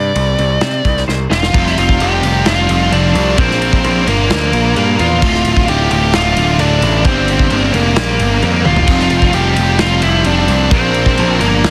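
Angsty and dark, this quiet-loud alternative rock excerpt at 131 BPM opens with a bright semi-hollow electric guitar's lush chorused arpeggios beneath an up-front bluesy lead guitar, distorted and trailed by tape echo, a growly overdriven picked bass and a loose, small-room indie drum kit with dark cymbals and a punchy kick; at 1.5 seconds a cranked stack guitar and a thick fuzz guitar join in with background riffs beneath a very quiet, smooth bowed string section, and a tight, double-tracked guitar riff slips in at 8.9 seconds, the mix pressed into a dense, heavily limited master with little reverb.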